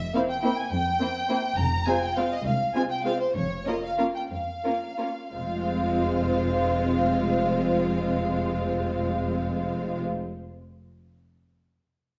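Stormy and urgent, this quick classical-period movement for string orchestra in F minor moves in a straight 6/8 at 57-70 BPM, easing its pace between 0.7 and 5.3 seconds as the harmony passes from C7/F through F minor and B-flat minor before settling back on F minor. Up-front violins carry the smooth, vibrato-rich melody while a second, focused violin line sits beneath, distant violas add a rich inner accompaniment, and soft-attack cellos join dark, expressive double basses holding a low F pedal. The lush, bowed ensemble blooms in a reverberant recital hall, heard as a fragment cut from a longer piece.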